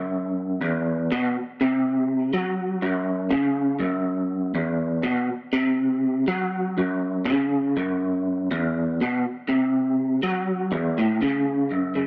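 A moderate echo-chamber reverb gives this short rock excerpt a roomy, dark and hypnotic atmosphere at 122 BPM in 4/4 with a straight feel, centred on F# minor. An electric guitar through a small old amp plays alone and up front, picked, slightly broken-up and lo-fi, with a rotary speaker effect colouring its low register between E2 and F#3. It opens on an F#5 chord and plays on until it stops at 12.1 seconds.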